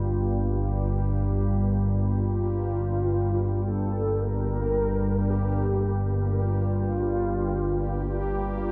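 Unfolding in free time, this dark, unsettling ambient drone cut from a longer piece sets a calm, detuned organ-like drone up front beneath a round, horn-like synth lead with vibrato, analog chorus and tape echo, while a resonant, bubbling stepped-filter texture fades in from the background over the full 8.7 seconds, all held on a single Gm7 chord in a cathedral reverb with a 6.3-second decay.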